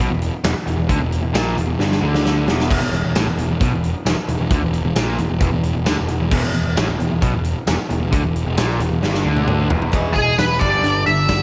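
Classic rock with a sunny, confident feel, cut from a longer piece: a compressed, double-tracked distorted electric guitar riff rides over an up-front, fuzzy, overdriven picked bass and a big acoustic drum kit with a punchy kick and bright cymbals in an echo-chamber room, the drums filling first at 1.8 seconds, before a boxy, fresh-stringed swing-style acoustic guitar slips in behind at 9.9 seconds and a dark octave-fuzz lead guitar with wah leaps forward at 10.1 seconds as the chords move from E to G.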